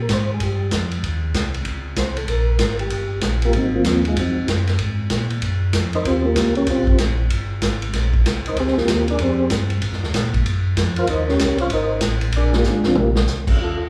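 A brisk 191 BPM swing in 4/4 drives this bluesy soul jazz organ trio, cut from a longer piece and set in Eb mixolydian. A soft, flute-like tonewheel organ carries the melody as a solo from the start, its percussive second-harmonic attack shaded by chorus vibrato and a slow rotary speaker. Beneath it, a second tonewheel organ plays a round, dark bass line with audible key click, also turning through a slow rotary speaker. An acoustic vintage drum kit with dark cymbals, a medium-tuned snare and a punchy kick sits up front yet sounds roomy, and it plays a fill between 12.6 and 13.3 seconds. The harmony moves through rich extended chords such as Eb13, Ab13 and Bb13 before closing on Bb9, all framed by a moderate recital-hall reverb.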